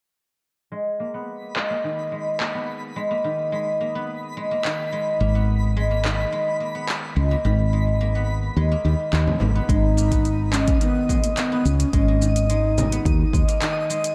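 A ringing, silvery guzheng played with fingerpicks opens this hypnotic organic downtempo excerpt at 0.7 seconds, its arpeggios in G# minor passing through a low-pass filter sweep, digital delay and shimmer reverb at a steady 107 BPM in a straight 4/4. A twinkling granular texture with an octave-up shimmer and slow attack sparkles high above it, followed by a deep house drum kit of handclaps, metallic hi-hat and shaker, overdriven and filtered. A round, hollow-body fretless electric bass arrives up front at 5.2 seconds, its dark tone pumping against the sidechain. A deep, distant frame drum struck with hard hands enters in the background at 9.3 seconds, just ahead of the second section. That section begins at 9.7 seconds, when a breathy, mellow low ney with a crisp attack and straight tone takes the melody through delay and shimmer, joined by a punchy, overdriven electronic kick. The dark production sits in a lush hall reverb that gives the piece a warm glow.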